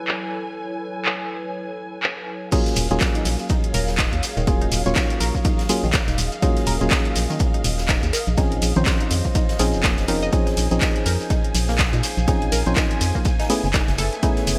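A late-night, smooth deep house excerpt with a gentle swing, opening on a warbling, nostalgic tape-like pad with chorus, built-in reverb and vintage sampler grit, sitting in the background beside a dark, lush studio violin section with vibrato and portamento, both pumping against the sidechain. A punchy analog drum machine joins almost at once, its tape-warm crash, handclaps, hi-hat and ride softened by low-pass filtering and gated reverb. At 2.5 seconds the drop arrives: an up-front electronic kick, a hollow percussive organ stab with chorus and digital delay, and a round, nasal analog pluck playing arpeggios through chorus, phaser and delay. A very quiet big-room acoustic kit adds ride and snare, while a grainy, mellow shekere sits close in the background, and an organ-like FM bass with a fast, decaying attack enters at 2.8 seconds, pumping under the beat. The harmony moves through minor eleventh chords, and the bright 1980s-style digital production wraps it all in light reverb and studio ambience.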